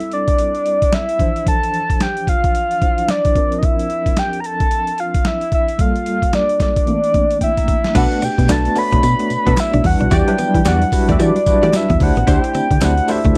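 A soft, octave-layered synth lead carries the melody up front, its round triangle tone thickened by a sine sub octave, with vibrato, chorus, a low-pass filter and a slapback echo. This punchy, confident new jack swing cut moves at 111 BPM in 4/4 with a swung sixteenth feel. A worn, slightly out-of-tune tine electric piano with medium tremolo, heard through a combo amp, comps beneath it over chords such as Am7, Dm9 and C9sus4. A gritty, pitched-down, sampler-style boom bap kit with a thumpy kick, a medium-tuned snare, hi-hat, crash and tambourine drives the groove, and both kit and piano play fills just before the second section. At 7.9 seconds a funky, detuned sawtooth polysynth adds ring-modulated stabs with a filter sweep, and at 8.0 seconds a dark, digital FM bass and a clean, direct-recorded electric guitar riff with analog chorus enter as the harmony shifts to Bm7, Em9 and D9sus4, with a very quiet, crisp group handclap following shortly after. 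The dry, close 1970s-style studio sound has light reverb, and the passage is cut from a longer piece.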